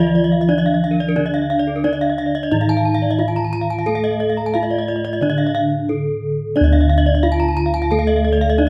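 A ringing bronze metallophone carries the melody up front, dark and smooth with shimmering beats from its paired tuning, in this brilliant, hypnotic gamelan excerpt in D pelog at 89 BPM, where a mellow, softly padded metallophone accompanies below, two more metallophones spin arpeggios (one a bright, close-miked voice entering at 0.1 seconds), and round, dry bossed gongs anchor the bass, all played live together in a reverberant large room.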